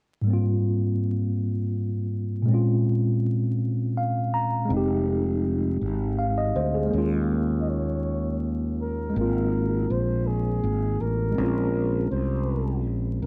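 A tine electric piano opens this slow, sensual six-eight R&B piece, its clean, warm voicing sitting up front with the color of cassette tape, laying down lush extended chords and adding a brief fill at 3.6 seconds. At 4.7 seconds a fretless electric bass joins as the foundation, bright, growly and punchy, sounding direct and up front. A breathy flugelhorn enters at 7.6 seconds to carry the melody, a dark, whispered solo voice in jazz style with light vibrato, soft attacks and scooped notes, heard distant and roomy beneath its own cassette-tape haze. The arrangement moves into a second section at 9.1 seconds, settling onto an Ab69 chord before turning to Bbm7. Moderate studio reverb and vinyl crackle give the home-recorded sound an intimate character, and the passage is cut from a longer piece.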